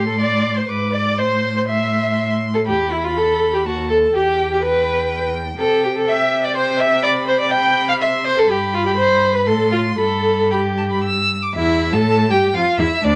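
A first violin with a rich, smooth and even tone carries the melody in this quick, cheerful classical-period movement for string quartet, its vibrato giving the line a spirited glow. Cut from a longer piece, it moves at 122 BPM in 3/4 with a rubato feel, tuned slightly high to A4 = 441 Hz. Beneath it, a dark, woody second violin plays a supporting line, while the viola adds expressive accompaniment with warm vibrato and gliding portamento, entering at 0.1 seconds. The cello anchors the bass with a focused sound and a smooth top, all four parts bowed by single players. The harmony moves from A minor through diminished passing chords, E minor and C to G and back to A minor, then shifts at 11.6 seconds into a brief new section on an Fmaj9 over E chord. A moderate studio reverb surrounds the quartet.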